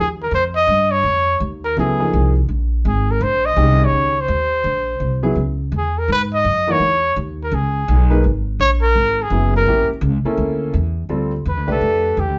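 This short excerpt from a longer piece has a live, single-room sound with moderate studio reverb and a soft, rounded top end. It is a searching, spiritual jazz performance at 167 BPM in 4/4 with a swung eighth-note feel. A mellow trumpet carries the melody throughout, up front and smooth on top, with light vibrato and scooped notes, and it takes a short solo from 11.1 seconds. Underneath, a pizzicato upright bass on gut strings plays from the start, woody and thumpy in its low register. A concert grand piano enters at 1.8 seconds with intimate, natural accompaniment, its deep bass and long sustain joined by audible action noise. The harmony moves through minor eleventh chords and an A7b9 before settling on Dm11 for the closing seconds.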